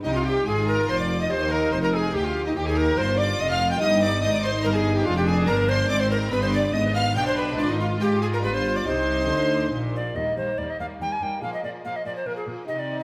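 A stone room's reverb surrounds this driving, dramatic baroque-style concerto movement in C minor at 143 BPM in 3/4, heard as a short cut from a longer piece. An airy, chiffy tenor recorder sits up front beside a focused, lush symphonic violin section on the melody, while a chamber violin section adds an expressive second line with portamento and a rich viola section fills in behind. A delicate, fingerpicked gut-strung lute plays very quietly underneath, smooth cellos carry the bass, and an intense double bass section supports them until 10.2 seconds, when the music moves into a new section on Eb.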